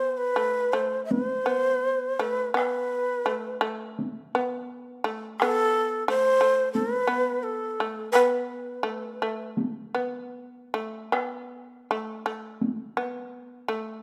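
Calm and austere, this excerpt of Japanese traditional chamber music moves in a rubato 4/4 at around 74-89 BPM, with a breathy, end-blown shakuhachi carrying the expressive, vibrato-touched melody up front until 9.5 seconds. Beneath it, a bright, buzzing plectrum-plucked shamisen holds a second line close in the foreground through to 14.0 seconds, while a taiko ensemble struck with hard sticks enters at 1.1 seconds. A moderate recital hall reverb gives the performance an open, resonant setting.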